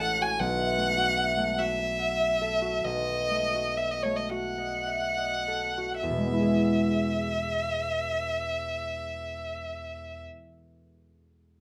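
A rich, expressive violin and a mellow concert harp open this serene, tender romantic duo together in light reverb, drifting in a rubato 12/8 in E major at roughly 32-54 BPM in dotted quarters, tuned to A4 = 438 Hz and slowing through the first 6.0 seconds. The solo violin carries the melody with expressive vibrato and portamento, while the thumb-plucked harp rings out beneath it over B7sus4 and B7 harmony that settles onto E at the start of the second section. The violin falls silent at 10.2 seconds and the harp at 10.6, closing this short excerpt from a longer piece.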